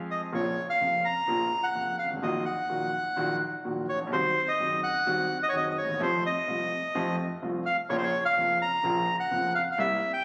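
A smooth concert grand piano opens this dramatic, tense tango fragment at 0.0 seconds, laying down deep bass accompaniment through Bbm, Ebm/Bb, Cdim and F before returning to Bbm, in Bb harmonic minor at 127 BPM with a rubato feel. A reedy, band-limited bandoneon joins almost at once, carrying the melody up front with a vintage character that the piano shares. Both sit in a heavy scoring stage reverb, heard through a phone recording made in the room.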